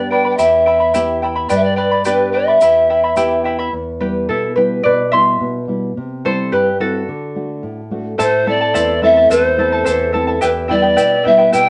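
A straight 2/4 pulse at 108 BPM drives this short, wistful cut of Andean folk in E minor, tuned slightly low at A4 = 438 Hz. An airy wooden pan flute carries the melody up front with a tongued, chiffy straight tone, while a grainy, mellow tube shaker sits quietly in the mix. Beside them, a bright fingerpicked charango shimmers up front on its double strings, some doubled at the octave, alongside a warm, thumb-plucked classical nylon-string guitar holding the low end. The flute and shaker drop out so the charango can take a solo from 3.7 to 8.2 seconds, moving through C and D before both return over an Am that resolves back to Em. The whole recording is soaked in a small, wet room and carries the worn, warbling pitch drift and dulled top of old cassette tape, which deepens its melancholic mood.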